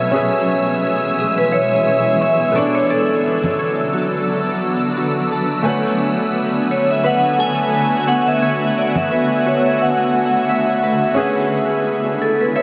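This relaxed, sunny sunset chillout fragment opens on a shimmering, ethereal pad sitting up front with an octave-up granular sheen, alongside a clear, intimate grand piano in the background whose action noise is audible beneath its long sustain. A fingerpicked Celtic harp rings out arpeggios through a filter sweep and diffuse ambient delay, while a dark, breathy wind-like noise texture hovers high above. At 1.2 seconds a metallic vibraphone played with medium hard mallets takes the melody, its vintage, band-limited tone colored by fast motor vibrato and analog delay. Electronic, layered congas with overdrive surface briefly in the background at 3.4 and 9.0 seconds, sounding re-recorded in a large room. The harmony drifts from C#m7 through Bm9 to a long Amaj13 before returning to C#m7, all bathed in a dreamy, reverb-soaked mix with a gently swung lilt.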